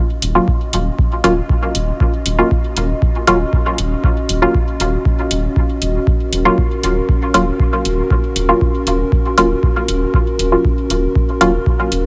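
A straight 4/4 pulse at 118 BPM drives this deep, hypnotic dub techno cut in Eb minor, where an up-front analog kick and tape-warm metallic hi-hat sit beneath a round, sine-like bass, muted sawtooth chord stabs with a filter pluck soaked in chorus, phaser and dub echo, and a dark, detuned square-and-sawtooth pad with slow attack and a moving notch holding an Ebm7 chord throughout, the bass, stabs and pad pumping against the sidechain inside a light reverb.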